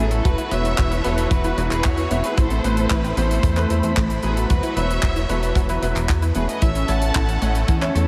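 A dreamy, reverb-soaked mix with a huge ambient tail frames this romantic, sunny italo disco excerpt at 113 BPM in a straight 4/4, moving between Esus2, Amadd9 and A chords. A rich, focused violin section carries the melody with vibrato and delay over veiled, con sordino strings holding sustained chords, while a lush, detuned unison pluck runs arpeggios in the background and an intimate grand piano with audible action noise adds chorused, delayed stabs. Underneath, a glossy, up-front retro synth bass with pulse-width modulation anchors the low end, a dry, polished funk kit brings handclaps and hi-hat from 0.1 s, and a tight acoustic kick joins at 0.3 s.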